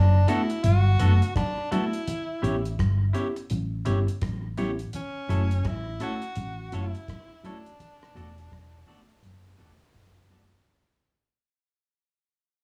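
Sweet and romantic, this lovers rock reggae excerpt, with its swung sixteenths, fades out across its 10.7 seconds. A clear, pop-style tenor saxophone with vibrato carries the solo melody through tape echo over chords moving from Gmaj9 to A7, F#m7 and E9sus4, while a round, up-front hollow-body bass anchors the low end and a mellow tine electric piano and a bright, twangy electric guitar supply accompaniment and stabs. From 0.3 seconds a dark, dry reggae drum kit of hi-hat, tight kick and rim click adds gated reverb, thick-skinned, damped congas enter in the background at 0.6 seconds, and a light small-room reverb surrounds the mix.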